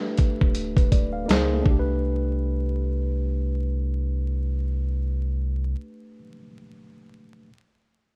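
A rough home-demo mix with vinyl crackle and little reverb frames this mellow, nostalgic lo-fi hip hop fragment at 81 BPM, swung on the sixteenths, with chords moving from G to Dbmaj7 and C5. A worn, slightly out-of-tune tine electric piano, clean yet heard through built-in speakers with a cassette-tape color, carries the accompaniment throughout, while a deep, full sub bass with an octave layer, sine- and triangle-shaped with a fast attack, sits up front from 0.4 to 5.8 seconds. The gritty, compressed sampler-style drum kit, with finger snaps, hi-hat, a thumpy kick and a medium-tuned snare re-recorded in a large room, appears up front only briefly, stopping at 1.9 seconds.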